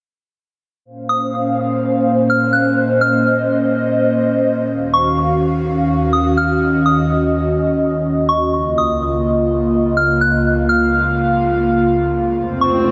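An airy, breathy pad opens at 1.0 s with sustained chords in Bb minor, its detuned, chorused tone sitting up front. A moment later a soft FM synth bell traces a high, pure melody through a low-pass filter and dub echo. This hazy, ethereal hip hop excerpt moves at 125 BPM in a half-time feel, bathed in a wet spring reverb and an echo-heavy mix, until an electronic swell enters at 12.5 s as the harmony reaches F.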